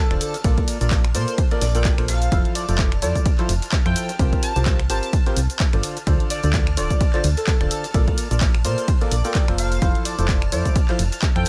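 A swung groove at 128 BPM in 4/4 drives this joyful, euphoric piano house excerpt in F major, built from an up-front, punchy electronic kick, a tape-warm analog drum machine playing finger snaps, handclaps, hi-hat and shaker, a very quiet tambourine, and a faint, gritty sampler-style kit adding ride cymbal and an overdriven snare. Underneath, a solid FM bass sits prominently, round and dark with a fast, decaying attack, pumping through sidechain. A percussive organ stab carries the riff with a hollow, mellow tone and lush chorus, also pumping, while a vintage string machine holds shimmering violin chords in the background. On top, an airy, dreamy lead sings the melody with vibrato, chorus and delay. The chords move through Bbmaj7, Fmaj7, C7sus4 and Dm7 before returning to Bbmaj7 at 7.9 seconds, all in a dry mix with little reverb.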